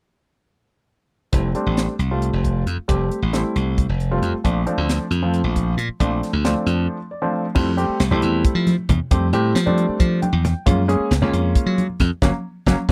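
Electric jazz fusion in a straight 7/8 at 270 BPM in F major, funky and soaring, with a punchy, glassy slap bass and a tight funk drum kit of bright cymbals, high-tuned snare and tight kick up front alongside a dark, worn grand piano whose action noise is audible and whose fills arrive at 6.9 and 10.0 seconds, while ringing, soft-handed congas join in the background from 7.6 seconds as Fmaj9 and Bbmaj9 give way to Fmaj9 and Gbmaj9, all captured in a dry, close 1970s-style studio sound and cut from a longer piece.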